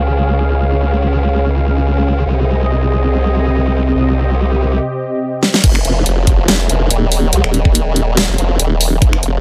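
A thick, up-front excerpt of heavy, chaotic wobble dubstep in F minor at 142 BPM with a half-time feel, where a lush, airy unison pad with chorus, phaser and sidechain pumping holds sustained chords over a detuned, overdriven formant-sweep wobble bass through a filter sweep, until a dubstep kit with a huge snare, crash cymbal, finger snaps and hi-hat enters with a drum fill at 5.4 seconds that launches the drop at 5.6 seconds on Fmadd9, bringing in a knocking electronic kick.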